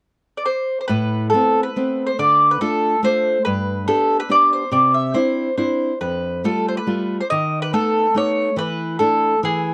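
Through a cassette-tape sheen and light reverb, this passionate, romantic Italian folk serenade in A minor moves in a rubato 3/4 at 141 BPM, as a mellow, woody, picked mandolin with doubled strings carries the melody up front from 0.4 seconds and a bright, fingerpicked classical nylon-string guitar with fresh strings joins at 0.9 seconds, accompanying through a progression that runs from Amadd9 to a closing E7sus4 in this passage cut from a longer piece.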